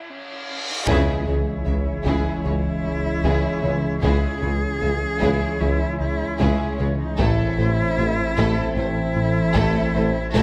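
A rich solo cello with vibrato and portamento carries the melody from 0.0 s over an electronic reverse cymbal and sub drop, and at 0.9 s this tense, relentless hybrid orchestral and electronic film cue in C# minor at 76 BPM opens out. A distant studio violin section and a focused symphonic violin line join over very quiet violas, cellos and double basses, a glassy, warbling FM pad with chorus, mellow French horns, a clear tuba, a rubbery square bass riff, a deep, rumbling detuned saw bass and a very quiet taiko ensemble, with the harmony shifting to A minor at 7.2 s inside a moderate scoring-stage reverb.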